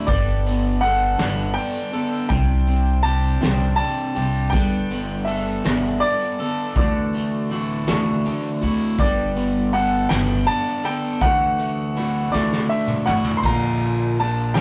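Folk rock and heartland rock in an open-road 6/8 at 54 BPM in G major, where a picked jumbo acoustic guitar with fresh strings and a bright, double-tracked overdriven electric riff ride over woody pizzicato upright bass and a soft brush kit with a fat snare and punchy kick, while a clear baby grand piano with long sustain carries the melody through Gadd9, Csus2 and Dadd9 chords before a drum fill at 12.3 seconds leads into a shift to Bb at 13.4 seconds, all in a rough rehearsal-room sound with moderate studio ambience and saturation, cut from a longer piece.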